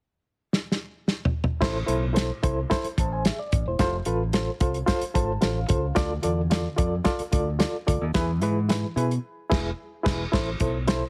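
A straight 4/4 groove at 110 BPM drives this passionate, uptempo 1960s-style soul excerpt in A harmonic minor, opening with a drum fill at 0.5 seconds on a dry, lo-fi, muffled kit with dark cymbals, a medium-tuned snare and a tight kick. At 1.6 seconds a punchy fingered electric bass and an up-front, barky, reedy electric piano with light overdrive and tremolo join over Am, F, Dm and E. The piano takes a fill of its own before the band hits an accent at 9.2 seconds, all set in a small room under heavily compressed, radio-style sound.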